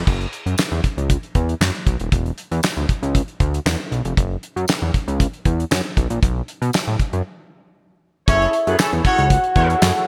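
A straight 4/4 groove of damped 70s drums, with a tight kick, fat snare, dark cymbals, hi-hat, handclaps and crash cymbal in gated reverb, drives this slick, danceable early-eighties boogie funk excerpt over a thick, detuned sawtooth analog bass that sits up front from the very start, while a jingly tambourine joins in the background from 0.6 seconds. After a break at 7.3 seconds, a soft octave-layered synth lead with chorus and tremolo enters at 8.3 seconds, alongside a clear, distant horn section in octave doubling and mellow, brassy synth brass with chorus. The bright digital production carries light small-room ambience.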